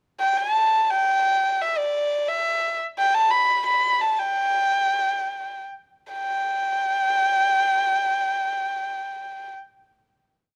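A lone erhu opens at 0.2 seconds with an intimate, airy-bowed modal melody in G gong mode, its soft attacks, light vibrato, portamento and ornaments giving this short, festive yet graceful Chinese traditional piece a rubato feel in 2/4 between 59 and 88 BPM, slowing from 3.0 seconds before settling at 6.1 seconds onto a held final note that sounds up front and close in a light reverb until 9.5 seconds.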